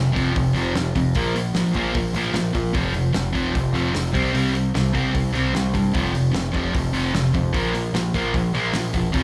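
A straight 150 BPM punk rock pulse in 4/4 opens this rowdy, rebellious fragment of a live club gig, where an up-front sludgy guitar with warm overdrive and a bright, compressed distorted guitar further back play riffs over a growling, overdriven picked bass, while a loose indie drum kit with a fat snare and tight kick joins at 0.2 seconds, all cycling through F5, Bb5 and C5 power chords with a slapback echo on the guitars.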